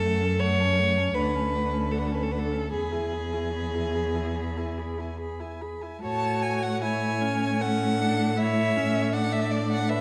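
A clear, focused cello sits up front with a bowed, vibrato bass line in this tender, lyrical slow movement for string quartet, a piece in A major taken at a rubato 71-81 BPM in 4/4. Above it, one violin sings the melody with a smooth top while a second violin, intense and also up front, carries a second line, and a rich, even viola fills in the accompaniment; all four play throughout the 10 seconds. The dark production places them in a moderate recital hall reverb as the harmony moves from F#m through Dmaj7 and E to a settled A around 6.0 seconds, closing on Dadd9/A.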